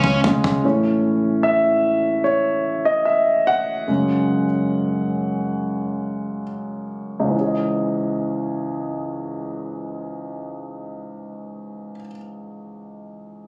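Longing and melancholic, this pop ballad fragment opens with a brief, dry tom fill and a very quiet, reedy bowed string chord that both stop at 0.6 s, after which an intimate, up-front concert grand piano with deep bass, long sustain and audible action noise plays alone, slowing down until 7.3 s and continuing to 13.5 s, captured on a phone in the room with studio reverb.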